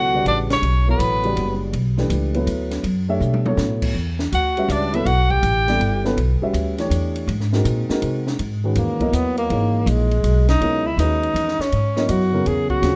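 Modal jazz in a swung 3/4, intense and searching, where a clear soprano saxophone with vibrato and a breathy, whispered tenor saxophone share brief phrases in the first 6 seconds over dark, worn grand piano, woody pizzicato upright bass up front and a distant, roomy cocktail drum kit with a punchy kick and a drum fill at 3.2 seconds, before the tenor takes an intimate subtone solo from 8.4 seconds as the harmony shifts to C# dorian.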